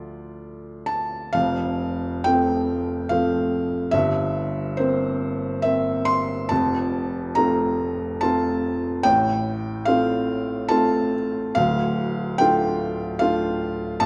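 This is a classical romantic nocturne for solo piano in F major, cut from a longer piece, with a wistful, mournful mood. It moves in 3/4 at around 71 BPM, but the beats are uneven and the rubato lets the pulse breathe freely. A felt-muted upright piano carries everything on its own, sounding soft, mellow and intimate, with a thin felt tone and a vintage character that sits up front. Its range spans from a deep D1 up to C6. The harmony opens on D minor, shifts to F at 1.3 seconds to begin a new section, passes through C7 over G and F over A, then sinks back to D minor at 11.6 seconds. A moderate scoring stage reverb surrounds the piano with a gentle sense of space.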